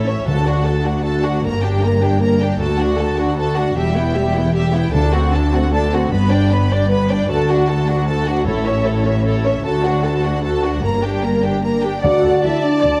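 Heroic and adventurous, this cinematic fragment in a straight 12/8 builds over its first 12.0 seconds as a lush symphonic violin section carries the bowed vibrato melody above a close, up-front studio violin section on the second line, a smooth viola section, a warm cello section and a focused double bass section, with soft-malleted, round timpani strokes in the background at 0.3 and 4.9 seconds before a dark, distant French horn section joins for sustained chords and a final timpani stroke at 12.0 seconds, all set in a moderate scoring stage reverb.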